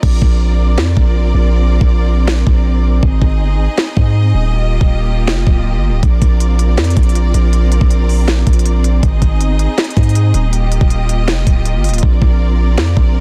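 A half-time trap beat at 160 BPM, with a knocking kick, sharp snare and crisp hi-hats gritty with vintage 12-bit sampler character, drives this wistful yet triumphant hip hop excerpt, where a deep, up-front sine 808 bass decays beneath lush, vibrato-rich bowed symphonic strings cycling through Bbadd9, Ab and Ebadd9, all in a dry, dense, heavily limited master dusted with vinyl crackle, opening on a break through 6.0 seconds before the hi-hats fall silent at 12.0 seconds.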